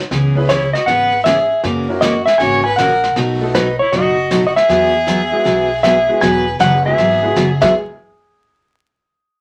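A vinyl crackle and a short, wet studio ambience frame this cheerful, swinging western swing excerpt in E major at 157 BPM, with chords moving from C#m7 through F#7 and B7 to Eadd9. A dark, compressed lap steel carries the slide melody up front, joined by a close, biting fiddle playing a second line with light vibrato and an airy bow, while a bright upright piano joins the accompaniment at 0.4 seconds. Beneath them a full-bodied dreadnought acoustic guitar is picked alongside a woody, thumpy pizzicato upright bass and a vintage brush kit with dark cymbals and a punchy kick, and the chords drop away at 7.7 seconds.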